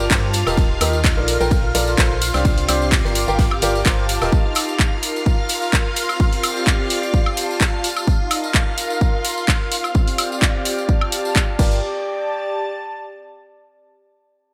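Energetic and soulful, this piano house cut at 128 BPM in G minor sets a clear, boxy baby grand piano riff with digital delay over a hollow, organ-like FM bass with tube saturation, until both drop out at 4.3 to 4.5 seconds and return briefly at 11.6 seconds, while shimmering vintage string machine violins hold chorused chords, a breathy pad with a slow attack lingers to 13.7 seconds, a barely audible downlifter opens, a punchy, tape-warm electronic kick sits up front with a house drum kit of crash, handclaps, hi-hat and woodblock, a very quiet arena kit adds ride and fat snare early on, and a compressed tambourine sits in the background, all in a bright 1980s-style digital production with plate reverb and sidechain pumping on the strings, piano, bass and pad.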